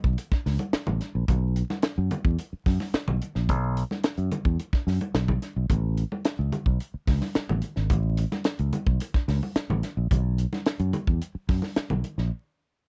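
A tight, acoustic funk drum kit with a high-tuned snare and tight kick opens alongside a punchy fingered electric bass moving between G#1 and F#2, both up front in a dry, close 1970s-style studio sound flecked with vinyl crackle. Bright, thin-skinned congas with a vintage, band-limited tone sit further back from 0.2 seconds, adding to the strutting groove at 109 BPM in straight 4/4. The band plays until 12.3 seconds, when a short break closes this fragment cut from a longer piece.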